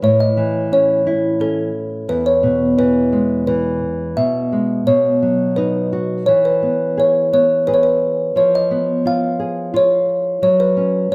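A delicate, tinkling music box, slightly out of tune with a dark, smooth tone, carries the melody up front in this tender, innocent children's piece in 3/4, a brief cut from a longer work, while a small, thumb-plucked nylon-string guitar accompanies throughout beneath chords moving from A to E and on to Fm7b5, all set in a moderate recital hall reverb.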